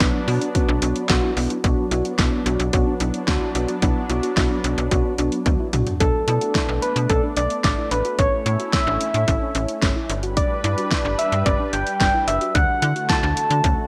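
Driving straight 4/4 at 110 BPM in B minor, this melancholic synth-pop excerpt sets a punchy, up-front pop drum kit with gated reverb, handclaps and toms against a snappy, metallic FM slap-like bass, while a clean, mellow tine electric piano carries the accompaniment until 5.9 seconds, a lush, warbling detuned unison pad sustains chords throughout, a dark, round pluck with delay spins arpeggios in the background, and a gentle, keys-like struck synth lead, heard briefly at the opening, returns with the melody at 6.0 seconds after a drum fill, moving through Bm7, A, G and D in bright 1980s-style digital production with a plate reverb.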